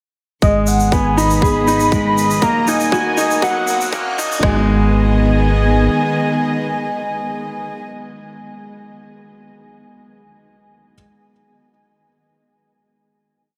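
Piano and strings electronica at 120 BPM in G# minor, moving and hypnotic, in which a bright concert grand piano repeats a six-step arpeggiated riff with delay that drifts against the bar, alongside an intimate sul tasto string section and a velvety, detuned synth lead with chorus singing arched motif phrases, all from the opening, over a round analog bass with sidechain pumping, overdriven electronic drums with a tight four-on-the-floor kick and woody snare, a distant roomy shaker and a very quiet riser, through a filter-swept build from G#m to D#m that resolves at 4.4 s onto a final G#m chord held by the strings and lead, before the piano rings on alone until 10.9 s.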